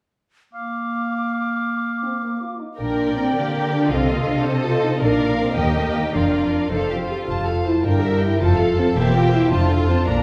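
A quick, cheerful and graceful classical-period movement for symphony orchestra in 6/8 at 107 BPM in Bb major, opening at 0.5 seconds with a clear oboe, a pure concert flute and a mellow clarinet sharing a brief second line, while a French horn section enters at 2.0 seconds with smooth sustained chords. At 2.8 seconds the strings arrive: a dark, woody violin section carries the melody over a rich second violin line, lush viola accompaniment, and a bass of focused cellos and double basses with some portamento. Generous scoring-stage reverb places the orchestra further back in the room, and the passage is cut from a longer piece.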